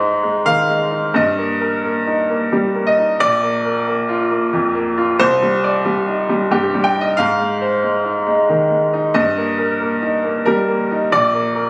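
Intimate and tender, this brief excerpt from a longer contemporary classical piece sets a bright, brilliant baby grand piano alone and up front in Eb major, moving in a rubato 3/4 at about 91 BPM through chords of Ab, Eb/G, Bb and Cmadd9 across a range spanning Bb1 to G5, its open tone carrying a slapback echo amid light reverb and the studio ambience of a phone recording in the room, with a new section arriving at 3.2 seconds.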